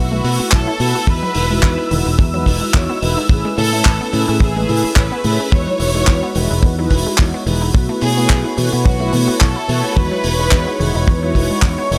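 A lightly swung 4/4 groove at 108 BPM drives this sunny, groovy nu-disco excerpt in E major, anchored by a tight, dry kick that sits up front from 0.5 seconds and a damped 70s drum kit of handclaps and hi-hat with a rolled-off top entering at 0.2 seconds. A round fingered electric bass, warmed by tube saturation and pumping with the sidechain, holds down the low end. Mellow synth brass with a dark, detuned sawtooth edge and chorus supplies the accompaniment, while a thick, warbling vintage pad with slow attack sits in the background, its sustained chords also breathing with sidechain pumping. A very quiet, punchy unison pluck traces wave-folded arpeggios underneath, and a rich studio violin section carries the bowed melody with vibrato and a smooth top, trailed by tape echo. The harmony moves from B7sus4 through Emaj9 and Amaj9 before returning home, all set in a studio reverb.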